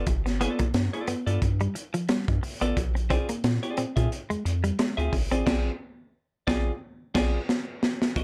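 A clean, picked electric guitar opens this short funk clip, its compressed, up-front chords moving from G9 to Bb9 as a second clean guitar plays a low riff that stops at 5.4 seconds. A round analog bass sits beneath them with a deep, sustained, sine-like tone and a filter sweep, while a crunchy breakbeat kit arrives almost at once with a tight kick, a medium-tuned snare, hi-hat, crash and dusky cymbals. The drums sound saturated and gritty, with a pumping small-room character and a rolled-off top. The groove is energetic and playful, with a light swing on the sixteenths, and the whole band hits accents from 5.5 seconds before a drum fill closes the passage. Light reverb and a dark, warm production give the recording a snug feel.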